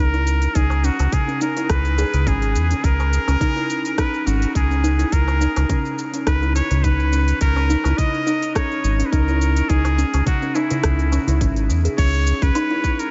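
A lightly swung 105 BPM groove in 4/4 carries this mystical, hypnotic organic downtempo fragment, where a nasal, straight-muted trumpet with vibrato and scooped notes plays a jazz-style solo through delay over woody, mellow kalimba arpeggios shaded by a low-pass filter and tape echo, a round, dark analog bass up front, a tight electronic kick, an electronic kit of smooth hi-hats, crash, rim clicks, shaker and woodblock, and a crisp metal-shelled darbuka played with soft hands in the background, the whole mix sitting in light studio reverb with a gentle top end.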